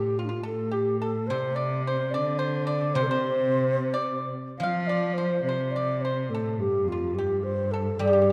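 An airy bamboo xiao carries the graceful, festive melody in C zhi mode at a rubato 72 BPM in 2/4, alongside a focused, bowed cello with vibrato and a bright, dry, percussive fingerpicked pipa on second lines, before a very quiet, silvery, ringing guzheng enters at 1.3 s to accompany this Chinese traditional chamber piece in a dark production with a reverberant concert hall sound.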